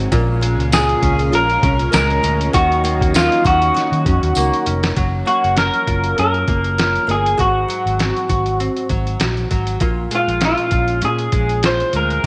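A moderate plate reverb hangs around this dreamy, sunny bedroom-pop excerpt, with a lightly swung, unhurried indie-pop groove. A muffled, pitched-down sampler-style drum kit sits up front with a thumpy kick, medium-tuned snare and hi-hat, its tape-warm tone compressed, and a drum fill leads into the second section at 4.4 seconds. Beneath it, a dark, round, foam-muted electric bass carries the low end, while a small, boxy nylon-string guitar is fingerpicked throughout, with audible finger squeak and a warbly analog chorus that makes its pitch drift. Over the top, a slightly broken-up electric guitar through a small old amp plays the lead melody from 0.7 seconds, lo-fi and up front, coated in lush chorus and slapback echo. In the opening stretch, a vintage organ-like string pad with a soft attack and ensemble chorus sustains chords in the background, joined by a jingly, close tambourine, both dropping out before 5.0 seconds as the harmony moves from minor-seventh chords toward a brighter Gbmaj7.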